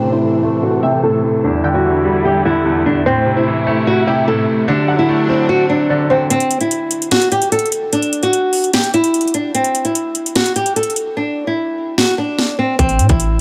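Melancholic and hard-hitting, this half-time hip hop and trap excerpt opens with a fingerpicked flamenco guitar melody up front over clear grand piano accompaniment, a dark symphonic string section sustaining lush bowed chords in the background and a warbling, lo-fi dusty pluck line moving through a filter sweep; at 6.3 seconds the piano, strings and pluck drop away as an overdriven trap drum kit with a hard-clipped kick, sharp snare and metallic hats joins the guitar, before a deep 808-style bass arrives at 12.8 seconds.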